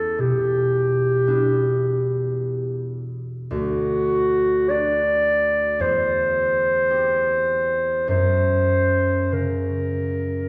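This is a romantic classical duo for clarinet and harp in B minor, melancholic and elegiac in mood, moving slowly at 48-56 BPM in 4/4 with a free, rubato feel. The clarinet carries the melody between F#4 and D5, its tone warm yet distant and roomy, heard as a classical solo voice sitting up front. The concert harp accompanies from D2 to G4 with a bright, ringing, fingerpicked sound, also placed up front but at a lower level than the clarinet. Both instruments play throughout the 10.5 seconds, passing through Em7, Bm/D and C/E before arriving on F# at 8.1 seconds. A wet recital hall reverb with a 1.6-second decay surrounds the pair, giving the sense of a church or concert hall, and the passage is cut from a longer piece, tuned to A4 = 441 Hz.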